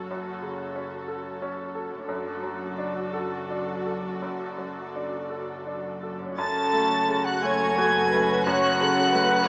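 In a rubato 6/8 that drifts around 54-61 BPM on the dotted quarter, this short cinematic cue from a longer film score rests on an F# minor chord and feels bittersweet and sorrowful. A symphonic violin section carries the melody high and floating, with soft attacks and a pure sul tasto tone, while a chamber violin section beneath it adds an intimate second line with light vibrato. A bright, brilliant grand piano with short sustain and a woody, lush viola section supply the accompaniment, and a very quiet concert harp rings mellow fingerpicked arpeggios. The bass sits on a distant cello section and a dark double bass section far in the background, both holding F#. At 6.4 seconds the second section opens as an expressive concert flute, the most prominent voice, adds a second line, and a roomy French horn section sustains chords. A moderate scoring stage reverb surrounds the orchestra, though the overall sound is thin, as if heard through a small speaker.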